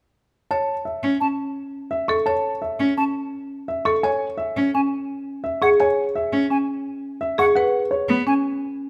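Hypnotic and bright, this cut from a longer minimalist classical pattern piece moves at 170 BPM in 5/4 in A major, with an intimate baby grand piano carrying the melody over woody, percussive rosewood marimba arpeggios from 0.5 s, a rich, focused bowed cello with vibrato joining at 1.0 s, and airy, softly attacked silver flute arpeggios entering at 1.2 s, set in a moderate recital hall captured by close, detailed microphones as the harmony passes from A to C#m to Bsus2.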